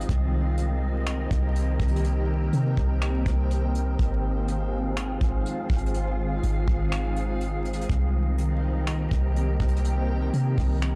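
Floating and blissful, this half-time atmospheric cloud-rap excerpt at 123 BPM sets a deep, round 808-style bass with tube saturation and an up-front brush drum kit of finger snaps, hi-hat and punchy kick against a blurred, detuned granular cloud pad that pumps under sidechain and a breathy, wind-like tuned noise texture, all moving from Cm7 to Ab6 and back in a blown-out, overdriven recording dusted with vinyl crackle.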